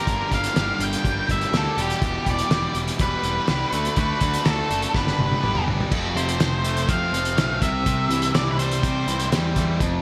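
Wistful yet carefree, this indie rock excerpt in C major moves at 123 BPM in a straight 4/4, with a dark, octave-fuzz lead guitar singing a delayed melody over a bright, double-tracked overdriven guitar riff, a warm fuzz-picked bass, and a muffled, cloth-damped drum kit with a fat snare and tight kick that plays a fill from 4.9 to 5.9 seconds before the chords shift from Gm7, Em7 and D6 toward F and C, all set in a plate reverb and a bright 1980s-style digital sheen.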